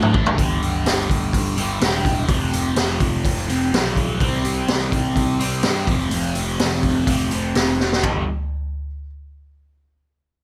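Hard rock at 125 BPM in a straight 4/4, this short cut from a longer piece feels driving and aggressive, tuned slightly below standard pitch. A drum fill kicks things off as a cranked, double-tracked stack guitar digs into a bright, overdriven picked riff with a phaser coloring its tone, moving through G5, F5 and C5 power chords. Underneath, a picked electric bass adds growly fuzz and overdrive, running low in the mix beneath the guitar. The raw garage drum kit sits up front with a boomy kick, a high-tuned snare, hi-hat, ride and toms, its saturated, gritty sound carrying a rolled-off top and a small-room character. Another fill arrives at 7.8 s, and the band drops out just after 8 s as the passage turns back to G5, all framed by a light reverb.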